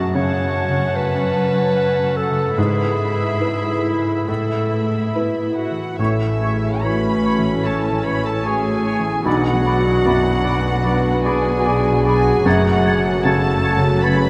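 Cinematic, moving and hopeful with a rubato feel, this passage opens with a veiled con sordino violin section carrying the melody, alongside a clear solo clarinet, a second muted violin line, a soft felt-muted upright piano with audible action noise, a dark viola section, ringing concert harp arpeggios and a lush cello section on the bass; at 6.0 s an airy flute section, a distant oboe, a mellow French horn section holding sustained chords and a bowed double bass section join, the ensemble set in a vast, echoing space.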